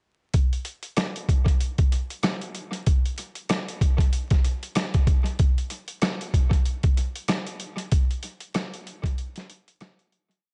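A dry, echo-soaked mix with vinyl crackle and a dull top end frames this short, dark and moody hip hop piece, which runs as a single hook from 0.3 to 10.4 seconds. The only part is a boom bap sampler-style drum kit, placed up front, with hi-hat, kick drum, rim click and snare drum run through an analog delay. Its sound is compressed, pitched down and gritty, with a thumpy kick, a medium-tuned snare layered with the rim, and a tape-warm tone. The beat is laid-back in 4/4 with sixteenth-note hats and a swung feel. A fade-out begins at 7.9 seconds, and a break arrives at 9.2 seconds before the piece closes.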